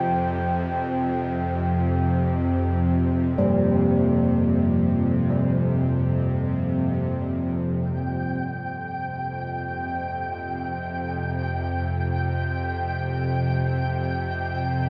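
A deep, moody pad and a tense, string-like bowed drone open this dark, cavernous ambient fragment in free time, with mellow bronze church bells ringing arpeggios through tape echo from 3.4 seconds and a grainy, flickering texture arriving up front at 7.9 seconds after the pad drops out, the whole echo-heavy mix steeped in a wet spring reverb.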